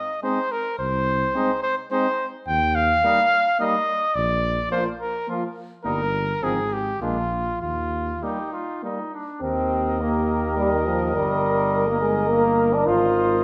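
In a flexible, rubato triple metre, this noble, triumphant classical brass quintet passage has a punchy cornet carrying the melody up front with light vibrato, a mellow, distant trumpet on the second line, and a warm French horn and clear trombone in roomy accompaniment, while a dark, smooth-topped bass trombone enters on the bass at 0.8 seconds, the ensemble set in a wet recital hall reverb.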